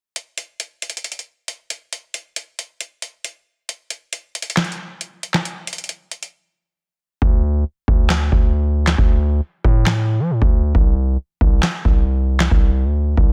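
A hard-hitting 808-style bass enters this menacing, melancholic trap cut at 7.2 seconds, playing between C2 and F3 with a punchy, heavy sine tone, a noise layer, a fast attack and a decaying tail. Before it enters, a booming analog drum machine carries the piece alone from 0.2 seconds, pairing a deep kick with a crisp snare, handclaps and metallic hi-hats, and giving the snare, clap and hats a short room sound. The groove sits at 136 BPM in 4/4 with a half-time feel, in D minor. A break at 6.3 seconds clears the way for the bass, and once it lands the hi-hats drop out for the rest of the fragment while kick, snare and claps carry on beside it. Both the drums and the bass sit up front in a dry, dense, heavily limited modern master, and this portion is cut from a longer piece.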